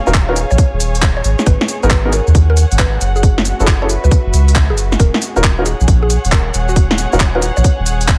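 A swung, bouncy two-step garage groove from a tight, tape-warm electronic kick and a garage kit of cracking snare, crisp hats, handclaps and shaker drives this soulful, short cut from a longer piece, with a deep, round dub sub bass up front, clear grand piano stabs, a woody, mallet-like synth pluck melody in the background through chorus, phaser and dub echo, and a dark, veiled, muted string section pumping softly beneath, all in a dry sound.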